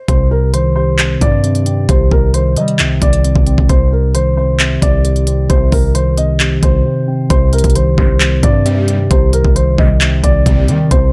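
Brooding and dark, this short hip hop cut from a longer trap piece moves at 133 BPM in 4/4 with a heavy half-time feel, sitting on a C minor chord throughout. A dark concert grand piano carries the melody between Bb4 and Eb5 from the very start, its boxy, intimate tone full of audible action noise and touched by a digital delay. Beneath it, a mellow tine electric piano plays clean accompaniment through a phaser, while a distorted 808-style bass, aggressive and heavy with a noise layer over its sine core, drives the low end. The trap drum kit sits up front and loudest, its knocking kick, crisp hi-hats and handclaps overdriven and re-recorded in a small room. After a brief break from 6.9 to 7.3 seconds, a second section begins, and at 8.0 seconds a big bright polysynth adds fat, nasal, detuned sawtooth stabs with a moving notch, sustaining until 10.8 seconds in a dry mix with little reverb.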